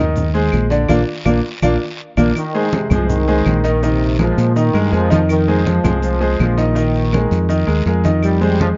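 Salsa with a sunny, festive mood, cut from a longer piece, built on a clear, polished concert grand piano and a round, punchy fingered electric bass up front, with low-tuned congas, woody claves and grainy maracas in the background and a raspy, close guiro. The band hits an accent from 0.9 to 2.4 seconds, and at 2.4 seconds a bright, tight trombone section with light vibrato joins as a second line while the harmony moves through suspended chords and Fm7. The production is dark and dry, with little reverb.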